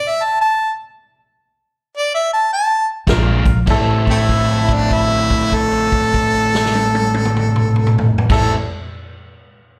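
A clear, close-miked harmonica sits up front in this brooding, smoky electric blues shuffle, playing alone for the first 3.1 seconds in a jazz style with light vibrato, tongue slaps and scooped notes while the pace slows down. At 3.1 seconds the band enters on a Bb7 chord: a crunchy overdriven guitar picks out a riff, a woody pizzicato upright bass holds down the low end, and a swinging big-band drum kit brings a punchy kick, a medium-tuned snare, hi-hat, toms and crash cymbal with a natural big-room sound. A bright, slightly detuned upright piano adds an intimate second line with audible action noise and long sustain. The harmony settles on A minor at 3.7 seconds, where a held note carries the swung groove until about 8.2 seconds. The harmonica and piano carry plate reverb and slapback echo, and the guitar has slapback echo as well. The performance is heard as a live gig through the venue's PA with club reverb, cut from a longer piece.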